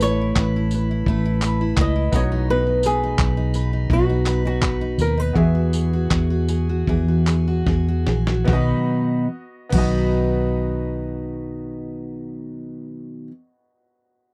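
A dusty, sampler-style soul drum kit with a thumpy kick, handclaps and tambourine opens this sunny, carefree acoustic pop excerpt in B major at 72-85 BPM, alongside a round, foam-muted electric bass, a full-bodied picked jumbo acoustic guitar and a bright, woody upright piano with audible action noise. A fresh-stringed flamenco guitar carries the melody until 7.7 s, as the tempo slows and the drums play a fill into the second section at 8.5 s, where the chords settle on B. The dry, close 1970s-style studio sound keeps the gritty drums, dark bass and acoustic guitar up front, with the piano lingering alone until 14.3 s.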